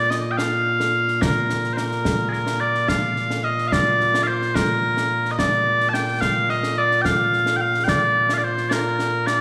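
A 6/8 pulse at 72 dotted-quarter beats per minute carries this Scottish traditional pipe tune in B-flat major, with a straight, ceremonial and stirring feel. The bagpipes open at 0.0 seconds with the melody, loud, bright and piercing, sounding continuously as the solo voice placed up front and ranging from Bb2 up to A5. A concert snare drum and concert bass drum join at 0.1 seconds, sitting lower in the balance with an acoustic, close and dry sound. The tune moves into a new passage at 2.9 seconds that carries through to the end of this short portion of a longer piece. The recording has the air of a church or concert hall, with a wet recital-hall reverb lending the performance a sense of grandeur.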